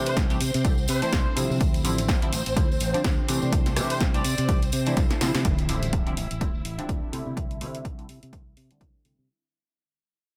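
Filtered disco house at 125 BPM with a swung, funky and nostalgic feel, cut from a longer piece, where an up-front punchy electronic kick and a small-room analog drum machine with hi-hat, rim click and snare, its hats pumping, play beneath a gritty chorused and phased polysynth comp, a swirling, warbling string machine, a round, dark fingered electric bass and a background tambourine with egg shaker and handclaps, while a brilliant trumpet section with light vibrato plays the melody until 4.6 seconds, a drum fill leads at 5.0 seconds into a fade-out with a filter sweep and a background impact, all over chords moving between C69 and Dm11 in a dry, close sound.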